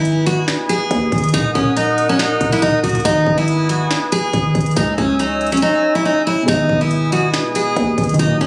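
Recorded on a phone in the room, with a close, dry sound, compression and a touch of studio reverb, this melancholic, dark trap excerpt in G# minor runs at 140 BPM with a half-time feel, tuned to A4 = 435 Hz. A bright, full-bodied picked steel-string acoustic guitar carries the melody up front over a deep, detuned sawtooth pad with chorus, a growling, buzzy 808-style bass and a produced trap kit of hard-clipped kick, sharp snare, crisp hats and finger snaps, as the chords move through G#m, D#m and C#m. The drums drop out from 5.6 to 6.5 seconds, and a soft, felt-muted upright piano with audible action noise enters at 6.4 seconds.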